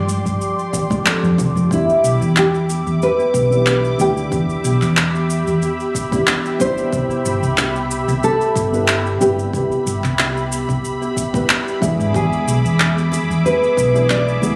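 A relaxed 92 BPM groove in 4/4 with a gentle swing on the sixteenths drives this blissful sunset chillout passage, cut from a longer piece. Tape-warm electronic shaker and handclaps sit up front over a deep, layered electronic kick, while ringing, close and dry congas sound in the background only at the start and again from 13.1 seconds. A round, hollow-body fingered electric bass with tube saturation anchors the low end as a dark concert grand piano adds mellow, boxy accompaniment behind it, and a lush, detuned sawtooth pad holds airy sustained chords through chorus, phaser and 12-bit sampler grit. The fingerpicked nylon-string guitar carries the melody with a full-bodied classical tone, fresh strings, audible finger squeak and a digital delay. From 1.7 seconds a woody kalimba joins with soft arpeggios, its gritty, delayed plucks tucked into the background. The harmony moves from G7sus4 through Em7 and Cmaj7 to E7, and the whole mix carries a recital-hall reverb and the intimate character of a phone recording made in the room.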